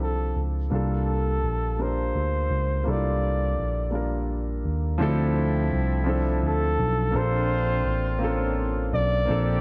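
Late-night and sultry, this short R&B excerpt in D minor drifts at 56 BPM in 6/8, with a breathy, whispered flugelhorn carrying the melody through tape echo and vibrato over warm grand piano chords moving from Dm9 to C13sus4 and later Bbmaj9, while a barky, lightly overdriven tine electric piano with phaser holds down the bass up front and a distant, roomy horn section adds background stabs from 5.0 seconds, all within a dark, intimate small-room sound.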